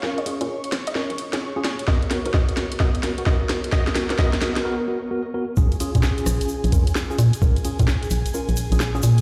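A swung 130 BPM two-step garage groove in Bb phrygian sets a late-night, moody tone, with an overdriven garage kit of hi-hat, rim click and cracking snare running throughout, a gritty, thumpy kick arriving at 1.9 s, a dark organ-like FM bass up front, mellow tine electric piano stabs with digital delay, an airy pad pumping in the background, a nasal square pluck melody under a filter sweep that stops at 4.4 s, and a grainy egg shaker joining at the 5.6 s drop, all ringing through a stone room on a big sound system.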